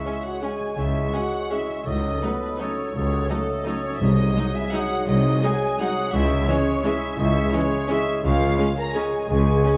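A bittersweet, dark orchestral ballroom waltz in C# minor opens at once with clarinet, violins, hollow flute, mellow bassoon, very quiet violas, dark distant French horns holding sustained chords, and a ringing, fingerpicked harp spinning arpeggios. Moving in 3/4 at 169 BPM with uneven, rubato beats, it sets a second violin section on a lush, vibrato-laden melody from 0.1 seconds, with the other violins and clarinet weaving second lines in the background while the flute adds its own second line. Cellos and double basses enter together at 0.8 seconds, rich and smooth, anchoring the bass beneath the harmony as it moves from C# minor through a half-diminished chord and G#7 back home. A single very quiet, close and dry timpani stroke lands at 4.0 seconds. The whole passage sits in a moderate scoring-stage reverb and is cut from a longer piece, ending on a Db chord just before 10 seconds.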